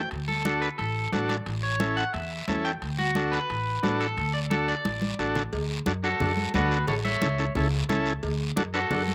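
A straight, danceable 4/4 cumbia groove at 177 BPM in D major comes from bright, hard-hand congas, a raspy guiro and very quiet, ringing timbales and cowbell, while a woody pizzicato upright bass sits up front. A buzzy, overdriven combo organ with light vibrato and slapback echo carries the accompaniment, and from 0.3 s a twangy, slightly broken-up electric guitar takes the festive melody with spring reverb and slapback. A drum fill at 4.9 s leads into a new section at 5.5 s in this dry, outdoor-sounding excerpt from a longer piece.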